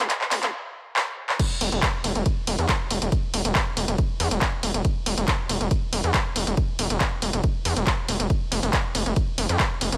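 Industrial and intense, this driving peak-time techno cut from a longer piece runs at 139 BPM in a straight 4/4, tuned to A4 = 444 Hz. A gritty, aggressive synth bass sits up front from the start, its distorted sawtooth and sine tones roughened by oscillator sync and ring modulation, with a fast-attack filter pluck, sustained notes between E1 and F2, and sidechain pumping. A punchy analog drum machine, re-recorded in a large room, supplies crash and ride cymbals, handclaps and hi-hats, with its hats and cymbals pumping against the sidechain and high-pass filtering thinning the hats, snare, cymbals and room. The opening 1.4 seconds form a build-up of short drum fills around a stop. Then an electronic kick drum, also analog and re-recorded in a large room, lands with the drop at 1.4 seconds and pounds on until 9.7 seconds. The mix is dry, with little reverb and a high-pass filter across it.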